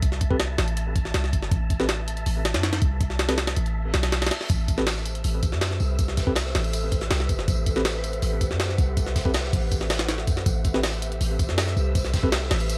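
A gritty, pitched-up jungle sampler kit leads this atmospheric, frenetic drum and bass excerpt at 161 BPM in A dorian, its thumpy kick and high-tuned snare sitting compressed and up front in a small room with tape-like warmth. Beneath it, a deep, boomy 808-style sine bass with a fast attack and decaying notes holds down the low end, while a clean tine electric piano plays stabs drenched in dub echo over a single Am9 chord. A breathy, wind-like noise texture hovers high and dark with built-in reverb throughout, and a very quiet electronic reverse cymbal rises into the 4.5-second mark. At that point a second, saturated breakbeat kit with rolled-off top and a medium-tuned snare, hi-hat and tambourine slips in behind the main drums, thinned by high-pass filtering. From 5.0 seconds an ethereal, airy pad of detuned sawtooth and triangle voices with a sub octave adds slow-blooming sustained chords, softened by ensemble chorus and reverb, all under a haze of vinyl crackle.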